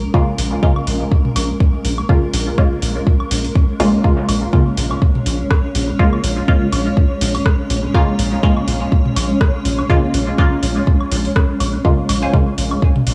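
A deep, layered electronic kick sits up front in a swung 4/4 dub techno groove, joined by a soft vintage rhythm box with metallic hi-hats and rim clicks that carry a dub echo. Electronic woodblock and toms lurk in the background, overdriven and echoing, while a round analog bass holds a single dark, sustained low note that pumps against the kick. A filtered dub chord stab, muted and detuned with a short plucked decay, drifts through phaser and cassette tape colour before trailing into echo over a lone Bbm7 chord. Alongside it, a granular cloud pad spreads blurred, slowly evolving sustained chords bathed in its own reverb and breathing with the sidechain. Near the close, at 12.2 seconds, a crisp, bright wavetable stab flickers briefly in a higher register, adding a final glint to this cavernous, nocturnal fragment of a longer piece set in a small, lightly reverberant room.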